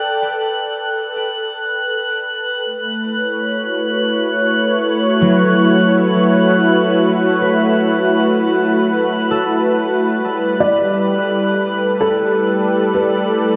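Bathed in a lush hall reverb, this luminous, serene ambient excerpt floats on an up-front, detuned analog pad with shimmer reverb, while a ringing concert harp plays arpeggios through tape echo, a glassy, drifting glass-harmonics texture hangs high above, a felt-muted upright piano with audible action noise brings a soft, intimate melody from 10.6 seconds, and a nasal analog drone hums in the background from 11.9 seconds.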